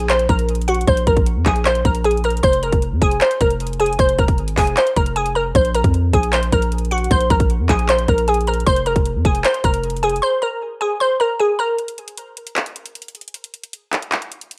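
Eerie and dark, this half-time trap and hip hop fragment at 154 BPM pairs a glassy, nasal, detuned wavetable pluck melody, treated with chorus and a low-pass filter, with a deep, mellow sine 808-style bass and a tape-colored electronic drum kit of hard-clipped kick, metallic hi-hats and handclaps over a digital ambience with a home cassette feel, moving between Bb5 and Fm until the bass ends and the drums drop out at 10.2 seconds, then returning at 11.8 seconds as the pluck stops and the drums play alone for a brief break.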